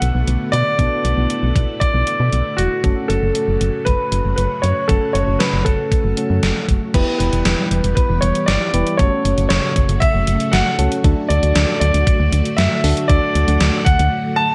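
This upbeat, bright synth-pop excerpt opens with everything in at once: a grand piano carrying the melody with a digital delay, over a gated 80s drum machine with a thumpy kick, hi-hat, crash cymbal and a gated reverb snare, all at a straight 117 BPM in 4/4. A solid FM bass sits up front, punchy, round and dark, with a fast attack and a decaying tone, while soft electric-piano-like synth keys add gentle, mellow accompaniment colored by chorus. Beneath them, a string machine ensemble holds lush, vintage sustained chords with a slow attack, long release and ensemble chorus. The harmony moves from Bm7 to F#m, then shifts at 6.9 seconds into a second passage through Em, F#m and D. The synth keys stop at 14.0 seconds, and the bass and drums drop out at 14.1 seconds, leaving piano and strings alone in a brief break until 14.5 seconds. The production is dark and warm with light reverb, the piano's long sustain standing present at the front.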